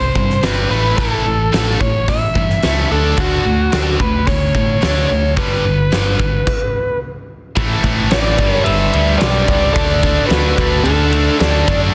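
Hard rock with a powerful, energetic drive, this clip from a longer piece opens with a biting lead guitar carrying the melody up front, its overdriven tone trailed by a slapback echo. Beneath it, a cranked stack guitar sits in the background while a heavy high-gain guitar adds a distorted, bright edge to the riff, and a growly, punchy overdriven electric bass anchors the low end. A huge arena drum kit comes in at 0.2 seconds with a fat snare, punchy kick, hi-hat, ride and crash, sounding big-roomed and up front. The band hits a stop from 6.5 to 7.6 seconds, and at 7.6 seconds a second section arrives with a very quiet, reedy tonewheel organ holding sustained chords through a slow rotary speaker, its key click audible, along with a double-tracked high-gain guitar playing the riff very quietly. A dark, slightly broken-up lead guitar slips in at 8.1 seconds with a compressed second line in the background. 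The mix carries light reverb and a small room ambience under a dense, heavily limited modern master.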